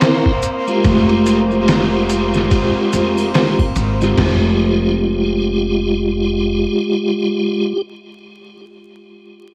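Trip hop in F minor at 72 BPM, this brooding, hypnotic fragment of a longer piece moves in 4/4 with a 16th-note swing. A compressed, pitched-down, gritty sampler-style drum kit sits up front with a thumpy kick, medium-tuned snare, hi-hat, ride and crash, while saturated maracas and group handclaps stay in the background. A piping, lightly overdriven tonewheel organ with key click, chorus vibrato and fast rotary speaker carries the accompaniment through tremolo, tape echo, sampler grit and a low-pass filter. A smooth, even studio violin section holds sustained bowed chords with light vibrato alongside a very quiet, tense, string-like drone, and a woody pizzicato upright bass enters at 0.8 seconds as the harmony shifts from C7 to Fmadd9. The drums, percussion, violins and drone fall away around 4.2 seconds, leaving the bass and organ, which carries on alone until 7.8 seconds. Light reverb, cassette tape and vinyl crackle give the whole a home-recorded, worn feel.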